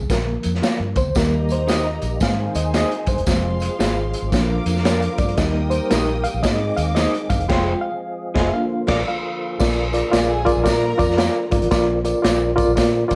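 Uptempo 1960s-style soul with a joyful, swinging feel, led by a reedy, worn, slightly out-of-tune electric piano with light overdrive and fast tremolo that solos through the first 9.6 seconds, over a round, foam-muted fingered bass, a gritty, saturated breakbeat kit with dark cymbals and a punchy kick, a jingly tambourine, background guitar stabs from a small, slightly broken-up amp, a bowed string section with intimate vibrato, and a fat tonewheel organ holding chords through a slow rotary speaker, with the band hitting an accent from 7.5 to 9.6 seconds.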